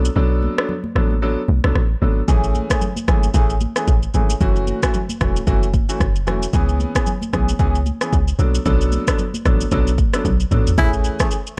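A deep, round log drum bass sits up front in this sultry afrobeats excerpt, its FM tone carrying a noise layer, a fast attack and a dark decay in the low register. Around it, an electronic, produced afro-pop drum kit with a deep kick, rim click, shaker and toms drives a smooth 113 BPM groove in 4/4 with a gentle 16th-note swing, opening on a break where the hi-hats are muted until 2.3 seconds and closing with a drum fill. A clear baby grand piano comps in the middle register through Bm7, Amaj7, F#m7 and C#m7. Thick-skinned, high-tuned congas played with soft hands sit in the background. At 10.8 seconds a close-miked, jazz-style tenor saxophone with light vibrato and a soft attack steps in for a brief solo touched with digital delay, all within a dark, studio-ambient production.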